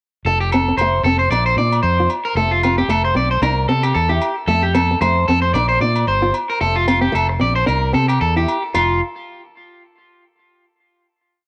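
A warm, up-front fingered electric bass opens at 0.2 s with a syncopated figure, quickly joined by a dark, boxy fingerpicked parlour acoustic guitar ostinato and a twangy, slightly broken-up electric guitar playing up-front picked arpeggios through tape echo and plate reverb, both guitars carrying a cassette-tape colour, while ringing agogo bells tap out a low bell time line in the background of this joyful, danceable highlife guitar-band piece in F major at 113 BPM with a light 16th-note swing, cycling through F, Bb and C before settling on a final note at 8.8 s in a lightly reverberant home cassette recording.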